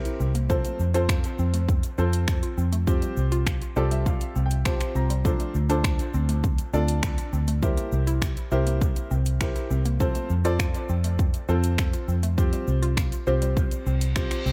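A dry, echo-heavy mix frames this bittersweet yet confident dance-pop excerpt, where the clear concert grand piano comps over an F, Csus4, Dm7 and C7 progression with short sustain, sidechain pumping and dub echo, and adds a fill at 3.5 s. A dark, round, foam-muted electric bass pumps up front beside a punchy pop kit of kick, metallic hi-hat and finger snaps. In the background, a hollow, detuned square-wave pluck spins chorused arpeggios through dub echo alongside a grainy egg shaker, while a downlifter opens the passage and a reverse cymbal rises at 13.9 s.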